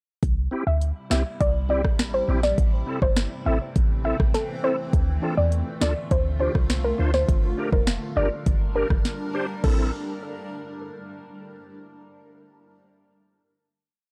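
Dancehall at 102 BPM in A phrygian, sultry and tough, where a deep, boomy 808-style bass with slides and an up-front afro-pop kit of deep kick, sharp snare layered with finger snaps and hi-hats drive a syncopated beat from 0.2 seconds, joined by reedy tonewheel organ off-beat chords spun through a fast rotary speaker, a soft, round plucked hook with chorus and tape echo, and a cloudy, evolving granular pad with phaser and pumping that enters at 1.0 seconds, moving from C through Am, Dm and Gm before settling on a final Am chord at 9.6 seconds in a dark, dry mix.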